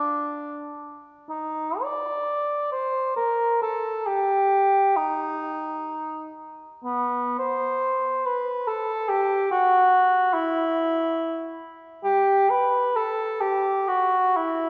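Rubato phrasing stretches a loose 3/4 pulse that drifts between 50 and 72 BPM, giving this classical fragment, cut from a longer piece, a free and expressive shape. A single cor anglais carries everything as an unaccompanied solo from 0.0 to 14.7 s, moving between B3 and D5. Its tone is dark and soft in attack, and the yearning, lonely line sits up front as the sole voice. The instrument still sounds distant and roomy, as if heard from further back in the space. A wet church reverb with a 2.6 s decay surrounds each phrase and deepens the sense of solitude.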